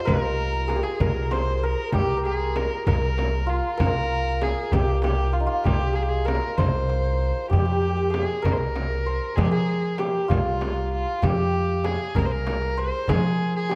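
The santur's hammered, shimmering melody opens the recording alongside a single bowed kamancheh line and a tight tombak played with hard hands in the background, with a woody, thumpy pizzicato upright bass and a small, bright frame drum joining at 0.1 seconds. This is a melancholic, soulful Persian modal ensemble piece, cut from a longer work, moving at a slow 64 BPM in a straight 6/8 and starting in C dastgah shur. The santur rings out warmly while the clear kamancheh carries a smooth, even second line shaded with light vibrato and portamento. The dark, steel-strung bass sits up front beneath them, and the frame drum sounds distant, as if set in a large room. At 7.5 seconds the music moves into F avaz esfahan for its second section. Close, detailed microphones and light reverb give the ensemble an intimate presence.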